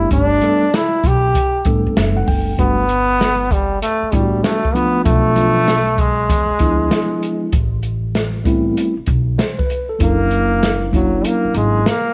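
This smooth, warm jazz-hop cut from a longer piece opens with trombone, tine electric piano and upright bass together, joined almost at once by an open jazz drum kit, at 97 BPM in 4/4 with a lazy 16th-note swing in G major. The mellow, clean electric piano sounds as if heard through its built-in speakers, lays down chords such as Gmaj7 and Gmaj9, and adds a short fill at 1.7 seconds. From 2.6 seconds the bright, punchy trombone takes a forceful jazz solo with light vibrato and a roomy tone, sitting up front over a progression that moves through Bm7b5, E7b9, Am7 and F#7b13. The woody pizzicato upright bass, on steel strings, anchors the low end, while the dark, acoustic drum kit offers a boomy kick, a medium-tuned snare and hi-hat with a rolled-off top. The kick drops out at 11.2 seconds, and the whole piece sits in light reverb and small-room ambience, with lossy compression artefacts.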